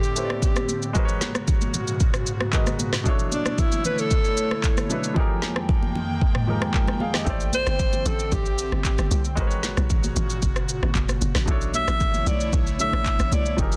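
A breathy, whispered alto saxophone carries the melody up front, its soft attack touched with digital delay, in this soulful, late-night amapiano excerpt at 114 BPM, played over mostly minor eleventh chords. A clear, intimate grand piano with audible action noise and an airy, warbling pad thickened by chorus fill in the harmony, while an electronic afro-pop kit with a deep kick, a woody, lightly clipped snare, handclaps, rim clicks, shaker and toms drives the groove, and bright, high-tuned congas sit in the background. At 7.3 s a tight, punchy log drum bass enters with a fast attack, all held in a dry, dense and heavily limited modern mix.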